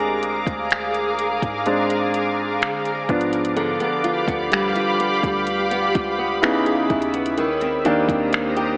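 A slow, straight 4/4 groove of finger snaps, metallic hi-hats and a soft kick arrives at 0.2 s on a smooth, electronic R&B kit with a tape-warm, produced sheen. This tender, romantic contemporary R&B fragment is cut from a longer piece, and a clear, intimate grand piano takes the solo spotlight, its natural tone carrying audible action noise. Underneath, a deep, round 808-style bass with a sine-like, dark character sits low in the mix. Above, a bright, cloudy granular pad holds evolving, blurred chords with ring-modulated shimmer and its own built-in reverb, pumping with sidechain. A fingerpicked flamenco guitar with fresh strings and finger squeak steps up front at 3.6 s, its arpeggios trailed by tape echo. The harmony moves from Bb7/D to G7 and on to Dbm7 and Cm7/Eb, all set in a lush hall reverb and filtered through a lo-fi AM radio tone.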